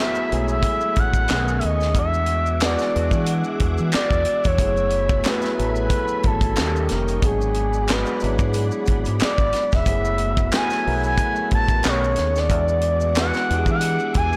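An expressive portamento lead sits up front, its smooth sawtooth-and-triangle tone gliding between notes with a soft attack, vibrato and chorus. This sultry, late-night neo-soul and R&B cut from a longer piece moves at 91 BPM in F# minor, with a 16th-note swing and a chord cycle of F#m11, B13, E9, D#7 and G#m7b5. A bright, barky electric piano plays clean accompaniment through a combo amp with a touch of chorus, while a silky, warbling vintage string machine holds sustained chords in the background. Maracas, finger snaps and group handclaps, close and dry, join at 0.2 s, and at 0.3 s a tight acoustic funk kit with a high-tuned snare, kick, hi-hat and handclaps arrives alongside a dark, round, punchy fingered bass thickened by transformer saturation. The whole take carries small-room ambience and a blown-out, overdriven recording character.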